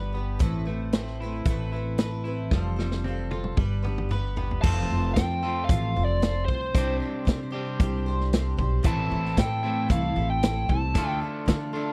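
Folk rock with a heartland rock streak, this dusty, reflective excerpt moves at 114 BPM in a straight 4/4, cut from a longer piece. A picked twelve-string acoustic guitar, full-bodied and shimmering with octave-doubled strings and a lush chorus, carries the accompaniment alongside a bright, slightly broken-up electric guitar riff. Underneath, a woody pizzicato upright bass sits up front with a natural country drum kit, its punchy kick and medium-tuned snare heard in a studio room, and a drum fill runs from 2.5 to 4.6 seconds. At 4.6 seconds a biting, overdriven lead guitar takes the melody high above the band as the harmony shifts from F through Csus2 and Am toward Dm. The sound is dry and close, in the manner of a 1970s studio recording.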